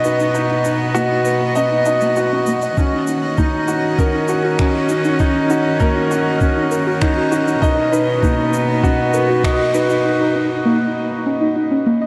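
Drenched in a huge, dreamy reverb, this melancholic, cinematic piano-and-strings electronica fragment at 99 BPM builds across its 12.1 seconds: a felt-muted upright piano with audible action noise plays an intimate, tape-echoed riff up front, while a sul tasto string quartet holds airy, sidechain-pumped chords. A dark, round pluck arpeggio passes through chorus, echo and a filter sweep, a barely audible sine sub bass sits beneath, and overdriven electronic shaker and finger snaps sound as if re-recorded in a large room. From 2.8 s a muffled, pitched-down kick thumps in, as the chords move from B to Ebm7 and back to B.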